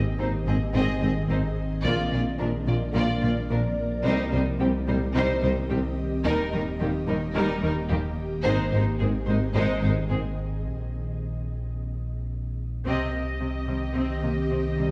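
Vast and futuristic, this cinematic stretch of a hybrid orchestral and electronic film score moves at 109 BPM in a straight 4/4 in C minor, cut from a longer piece. An ethereal, airy pad with detuned sawtooth layers, ensemble chorus and its own reverb holds sustained chords from the start, resting on a deep, full sine sub bass with an octave and a mellow, distant tuba. From 0.2 seconds the bowed string sections join: lush violins carry a smooth, distant melody with vibrato, a second violin section adds a focused line, and clear violas and even cellos fill out the harmony and bass in the background, with a very quiet, intense double bass section underneath. The harmony steps through Ab, Bb, C minor, Eb and back to Ab before the tuba, second violins and double basses fall away at 10.2 seconds, leading into a break where the harmony drops out at 10.7 seconds. A band accent lands at 12.9 seconds on C minor as the melody violins, violas, cellos, pad and sub bass continue into a new section. 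The whole sits in a wet scoring stage with a reverb tail of about 1.6 seconds.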